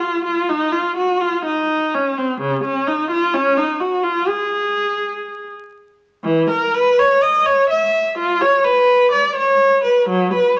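At a rubato 63 BPM in 4/4, this short fragment, cut from a longer piece, unfolds with a radiant, serene calm in the manner of a baroque-style suite movement. A single bowed viola carries everything alone for the full 10.6 seconds, ranging from C#3 up to E5 and tuned to A4 = 438 Hz. Its rich tone is shaped by vibrato, soft attacks and expressive portamento, giving the line a singing, unhurried quality. The viola sits up front, caught by close, detailed microphones, while a moderate recital hall reverb lends it a gentle halo. A vinyl crackle runs beneath the playing, adding an aged, intimate texture to the classical setting.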